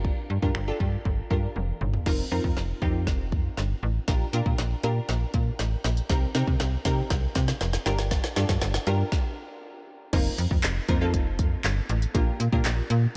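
Confident and driving, this dance-pop excerpt, cut from a longer piece, moves in a straight 4/4 feel with light reverb around it. A layered deep house drum kit sits up front, with a deep kick, woody snare and smooth hats joined by finger snaps, handclaps, toms and crash cymbal. A slap-like FM bass, snappy with a metallic attack that decays, also sits forward and pumps through sidechain. Crisp, detuned wavetable chord stabs pluck through a lush chorus over a cycle of Gm7, F7sus4, Bb6 and Cm7. After a short drum fill, a long build-up begins at 2.1 seconds, the music stops at 9.1 seconds, and the drop lands at 10.1 seconds.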